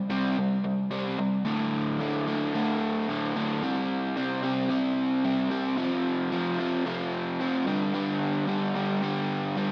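Rock cut from a longer piece, driving and gritty, in which a lone crunchy, overdriven electric guitar, picked, double-tracked and up front, moves from C5 to D5, back to C5, then on to F5 and G5 power chords, shifting into a new section at 1.5 seconds, all set in a lush hall reverb that gives it a big arena sound.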